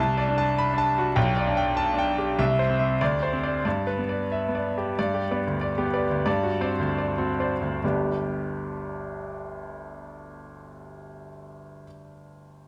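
A bright baby grand piano sits up front in a moderate recital hall reverb, its brilliant, intimate tone carrying audible action noise. This excerpt from a longer classical piece is a virtuoso piano study in G major, heroic and sparkling in mood, played with rubato in 2/4 at a tempo ranging from 70 to 102 BPM. The solo piano spans from G1 up to B5, moving through a harmony that opens on D7/C, passes through G/B, C and Csus2/D, and arrives on G. The pace slows between 4.3 and 7.8 seconds, as a D7 chord prepares the return to G at 7.8 seconds. The piano sounds natural throughout, with the hall's moderate reverb framing its bright tone.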